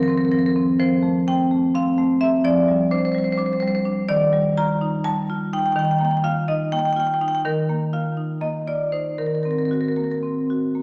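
Flowing and playful, this 10.8-second excerpt from a longer contemporary classical piece features a solo marimba struck with medium hard mallets, dark, smooth and percussive, placed up front and ranging from Eb3 to Bb5, moving rubato in 7/8 at 252 BPM in eighths through harmonies such as Cm7/Eb, Ebmaj9 and Ebm6, all bathed in a wet recital hall reverb with a 1.8-second decay.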